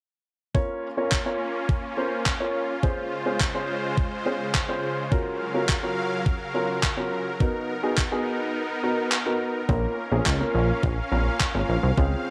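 A gated 80s digital drum machine drives this energetic dance-pop excerpt at 105 BPM in Bb minor, its thumpy, overdriven kick and handclaps up front with gated reverb, the kick dropping out from 8.5 to 9.7 seconds. A dark, intimate baby grand piano with audible action noise and a lush, detuned supersaw pad both pump against the beat as the chords move from Bbm through Dbmaj7, Gbmaj7/Db and Bmaj7 before returning to Bbm. At 9.7 seconds a punchy, nasal analog bass with a funky filter pluck joins in, all within a moderate spring reverb.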